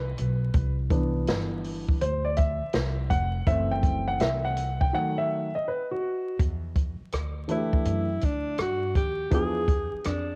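A dark, intimate grand piano with audible action noise takes a solo through the opening 6.4 seconds of this cool, mellow jazz-hop excerpt, over woody pizzicato upright bass and a small-room jazz kit with a boomy kick and swung hi-hat, before a soft-attack alto saxophone with analog delay enters at 7.5 seconds and a clean, fingered electric guitar appears at 10.1 seconds, all wrapped in cassette-tape grit and vinyl crackle.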